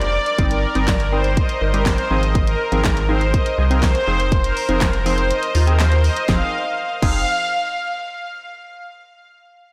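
A lush, detuned supersaw pad carries the melody up front with digital delay in this bittersweet, energetic dance-pop excerpt at 122 BPM in F minor, moving over Cm7/G, Ab6 and Fm7. Beneath it, a glassy, crystalline wavetable pluck with chorus and sidechain pumping plays the accompaniment. A round, deep sub bass also pumps with sidechain, and a pop drum kit with a punchy kick, fat snare, handclaps, hi-hat and crash drives the groove until 7.1 s, its kick dropping out from 5.3 to 6.3 s. The recording sits in light reverb and digital ambience, with a blown-out, overdriven sound.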